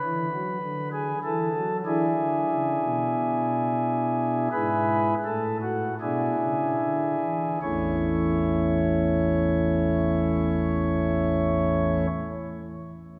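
Bathed in a church's long, wet reverb with a softly rounded top end, this short fragment of a longer classical chorale for solo pipe organ sounds majestic and reverent. The organ sits up front on soft flute stops in a romantic voicing, spanning from deep bass to a gentle upper register with a warm glow, and moves with a flexible rubato pulse in 4/4. The phrase moves from D to E7 while slowing down until 7.6 s, settling onto A for a closing passage before the organ falls silent at 12.1 s and the reverb rings on.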